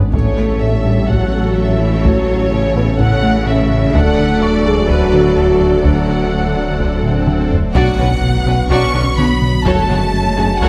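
A tense, brooding stretch of hybrid orchestral and electronic film score opens on a deep, detuned ambient pad, a smooth sawtooth synth bass riff, a pure sine sub bass and a very quiet felt-muted upright piano with boxy tone and audible action noise. Lush bowed violins carry the vibrato-rich melody over a distant second violin line, joined by focused violas, cellos and very quiet double basses in the background, sustained chords from dark French horns, a clear vintage tuba and a hard-stick taiko ensemble, set in a moderate scoring-stage reverb. An electronic swell from 6.8 s and a drum fill lead to an impact at 7.8 s, just after a trombone section enters with sustained chords at 7.7 s, as the harmony moves to Bmadd9 and F#madd9.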